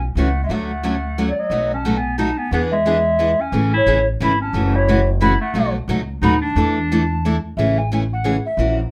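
Charming and swinging, this short cut from a longer piece of acoustic string swing in the jazz manouche style moves in a lilting 3/4. A mellow, hollow tenor recorder carries the melody from the opening, its pure wooden tone marked by vibrato, a crisp chiff on each attack and a somewhat distant placement. Beneath it, a woody, thumpy upright bass on gut strings is plucked pizzicato and sits up front, while a picked steel-string acoustic guitar with fresh strings supplies warm, up-front accompaniment from 0.2 seconds. A forceful, punchy clarinet with a vintage jazz character and light vibrato adds a second line, dropping out at 7.4 seconds. The harmony cycles through seventh chords back to Amaj7 as a new section begins at 7.6 seconds, and a moderate club reverb gives the ensemble a club ambience.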